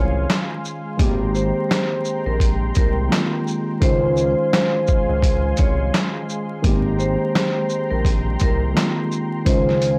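A swung boom-bap groove at 85 BPM in 4/4 rides on a muffled, thumpy sampler-style drum kit of kick, snare, hi-hat, handclaps and shaker, which enters at 0.3 s pitched down and up front over a smooth synth bass with vibrato. A hard-mallet vibraphone rings out a bright, close-miked melody with tape echo, while a worn, slightly out-of-tune tine electric piano with cassette-tape colour and a detuned analog pad with chorus hold Dbmaj7 and Abmaj9 chords in Ab major. This warm, soulful excerpt from a longer piece has a dry, gritty sound with transformer saturation and vinyl crackle.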